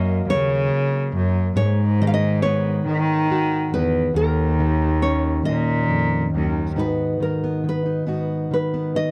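A fingerpicked, plugged-in steel-string acoustic guitar, a nylon-string guitar and a bowed cello all sound together from the opening moment of this short cut from a longer acoustic folk-pop ballad, unfolding slowly in 6/8 at 46 BPM counted in dotted quarters. The mood is heartbroken and intimate, with the harmony moving from Gb through Abm7 to Ebm9 before returning to Abm7 as a new section begins at 6.8 seconds. The nylon-string guitar carries the melody in a full-bodied, classical voice, while the steel-string guitar sits up front with a fingerpicked accompaniment that reaches from low Eb2 up to Gb4. Underneath, a single cello supplies the bass with a reedy, gut-string tone and light vibrato in a period style, heard both up front and with a distant quality, until it drops out at 6.7 seconds. The recording is dry and close in a 1970s studio manner, with little reverb around the instruments.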